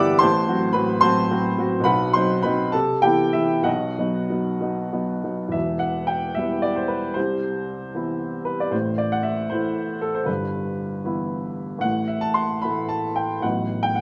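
A clear, open baby grand piano sits up front with long sustain, playing a bittersweet, stormy romantic character piece in 6/8 with free rubato, ranging from deep bass to bright upper notes and moving from minor-key harmony into a new section at 5.5 seconds, all captured by close, detailed microphones in a moderate recital hall reverb in this short excerpt from a longer work.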